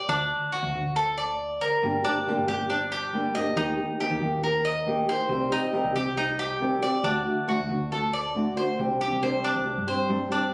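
The Cuban tres leads this sultry, danceable latin excerpt from the very start, its picked double strings ringing metallic and up front as it spins arpeggios between D4 and Eb5. At 138 BPM in a straight 4/4, a hollow-body short-scale electric bass enters at 0.1 seconds, picked, dark and round in tone, sitting low between G1 and G2 and well beneath the other parts in level. A small-sounding nylon-string guitar joins at 1.8 seconds with thumb-plucked accompaniment, close and intimate, with audible finger squeak. The harmony moves from D through Gm, Eb and Cm back to D, then opens onto Csus2 as a new section begins at 8.8 seconds. The sound carries a moderate studio reverb alongside club-like ambience and compression, captured on a phone in the room, and the fragment breaks off at 10.5 seconds as part of a longer piece.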